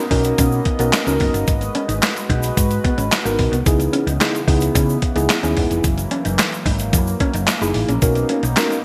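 Feel-good and smooth, this early-eighties boogie funk excerpt moves at 110 BPM in B major, cycling through Bmaj9, G#m7, C#m9 and F#13 over lush hall reverb and bright digital production. A clean 12-bit drum machine sits up front with a thumpy kick, medium-tuned snare, handclaps and hi-hat under gated reverb, while a round, punchy hollow-body bass carries the low end and a grainy egg shaker ticks in the background. A mellow tine electric piano plays the accompaniment, a dark, compressed electric guitar with ensemble chorus adds a riff in the background, and a shimmering pulse-width pad holds soft-attack sustained chords throughout.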